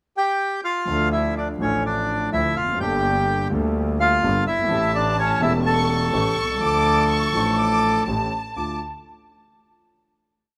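Passionate and sultry, this short tango in D harmonic minor moves at 125 BPM with a rubato feel: a reedy, airy bandoneon carries an up-front, motif-based melody partly doubled in octaves from 0.2 seconds, while a warm concert grand piano with deep bass and long sustain and a single earthy, nasal bowed double bass enter at 0.9 seconds in uneven groups of three and two eighths, and a rich, distant violin section adds a focused bowed counter-melody from 4.7 seconds before the piece settles on a final D minor chord, heard in a small room with light reverb and a rough home-demo mix.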